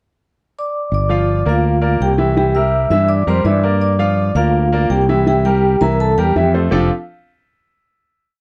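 Joyful and danceable, this Latin piece opens with a ringing, airy vibraphone at 0.6 seconds, its fast motor vibrato and slapback echo carrying motif-based song phrases that are partly doubled in octaves. A growly, amped fretless electric bass enters at 0.9 seconds with a tumbao that anticipates the chords, and a clear, open baby grand piano follows at 1.1 seconds with a short-sustain montuno in octaves, all three up front over a Gm7 to C7 vamp. The dry, close 1970s-style studio sound, touched with light reverb, ends on a final F69 chord.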